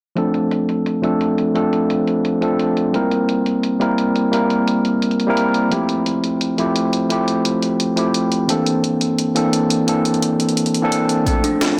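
An overdriven tine electric piano sits up front in this lush, melancholic slice of liquid drum and bass, its bright, barky tone pushed through a combo amp and shaped by a low-pass filter sweep and analog delay. The tempo is 173 BPM in a straight 4/4, in D minor, with the piano's accompaniment moving through Dm7, C7, Fmaj9 and Bbmaj9#11 before returning to Dm7. Beneath it, a compressed, sampler-style breakbeat kit supplies hi-hat and a high-tuned snare, both softened by low-pass filters and sitting lower in the balance. At 11.3 seconds a thumpy electronic kick lands, and a woody kalimba enters with short thumb-plucked arpeggios that carry analog delay. A plate reverb soaks the mix, giving it a dreamy atmosphere. The recording is cut from a longer piece.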